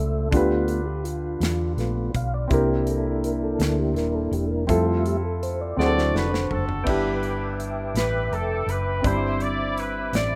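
This rough home demo carries a small room's ambience around a slow, soulful gospel groove in 6/8 at 55 BPM. Jubilant in mood and cut from a longer piece, it settles into G major at 6.9 seconds. A mellow, flute-like tonewheel organ with percussive attack, chorus vibrato and a slow rotary speaker holds sustained chords and takes the lead as a solo through the opening stretch. Beneath it, an intimate concert grand with audible action noise and deep bass supplies accompaniment, while a dark, round hollow-body electric bass sits up front. A polished acoustic drum kit with a punchy kick, medium-tuned snare, hi-hat, toms and crash plays from 0.3 seconds onward and breaks into a fill from 5.8 seconds. At that same moment a tight, vintage horn section with light vibrato enters on the melody in a jazz style, and by 6.9 seconds the harmony settles onto a G6 chord before closing on Cmaj9/G.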